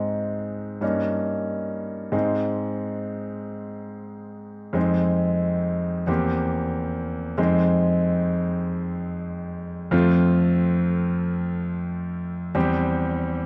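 Serene and dreamy, this is a short cut from a longer romantic nocturne for solo piano, moving at a slow 46 beats per minute in 6/8 with a free, rubato feel. A grand piano carries everything alone for the full 13.5 seconds, sitting up front with a clear, natural tone, an intimate presence and audible action noise from the instrument's mechanism. Its range stays between E2 and G4, keeping the sound in the lower and middle registers. The harmony opens on A-flat, turns to F minor seventh around 4.8 seconds, and settles onto F major at 9.9 seconds before closing on C over E. A wet recital hall reverb, decaying over 1.4 seconds, surrounds the piano with a soft halo of space.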